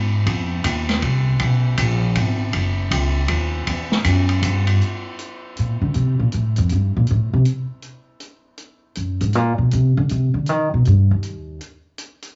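A woody, thumpy pizzicato upright bass opens this cool, swinging small-group jazz waltz at 159 BPM with swung eighths, joined at 0.3 seconds by a vintage drum kit with dark cymbals, a medium-tuned snare and a punchy kick, before the up-front bass takes a solo from 4.8 seconds until it stops at 11.6 seconds, the whole cut sitting in a moderate large-studio reverb with a muted high end.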